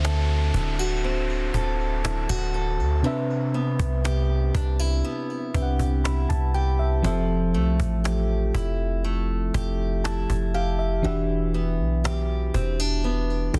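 This fragment of a sensual, late-night contemporary R&B track opens with a mellow FM electric piano, a picked acoustic archtop guitar, a clean 808-style bass and a cajon sounding together, while an electronic downlifter runs beneath them until 7.0 seconds. The electric piano supplies soft, round chords with a faint noise layer and a chorus effect, its dark tone starting on a fast attack and then decaying. The archtop guitar plays boxy arpeggios through a delay, with finger squeaks audible on the strings. Up front, the 808-style bass is deep and boomy, a pure sine with a fast attack that then decays, and the cajon sounds close and dry, snappy with snares under hard hands. The harmony moves from D7 to Cmaj7, Fmaj9 and Em7, set in a small room ambience within a dense, heavily limited modern master.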